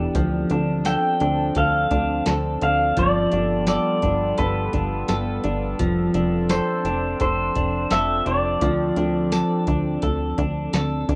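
Dream pop at 85 BPM in D dorian, hazy and ethereal, this excerpt from a longer piece opens on a drum fill from a soft vintage rhythm box with deep kick, tonal snare, metallic hats and tambourine, under a warbling, nostalgic tape-like pad that sustains detuned chords through Dm7, G9 and F6. A clean semi-hollow electric guitar plays arpeggios with subtle chorus and delay, while a punchy, funky analog bass with a filter pluck and fast attack sits up front. From 0.9 seconds a fingerpicked pedal steel guitar carries the melody with slide, volume swells and delay, all wrapped in a wet studio reverb and a rough home-demo mix.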